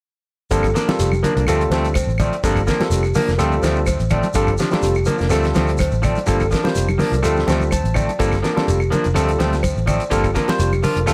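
Afrobeat groove at 125 BPM in 4/4 with a straight feel, set in G minor, funky and defiant in mood, and cut from a longer piece as it swings between Gm7 and Dm7. A barky, lightly overdriven tine electric piano carries the accompaniment through a combo amp, adding a fill between 6.8 and 8.2 seconds, while a bell-like celesta with hard felt hammers spins delicate arpeggios. An electric guitar at the edge of break-up plays twangy stabs coloured by a warbly pitch drift and tape echo. The vintage muted fingered bass sits forward in the mix, round and punchy with a foam-muted, amped tone, underpinned by a damped 70s drum kit with a fat snare, tight kick and rolled-off top. Grainy shekere fills in the percussion alongside woody claves and thin-skinned, close congas in the background, all held together by a light, small-room reverb.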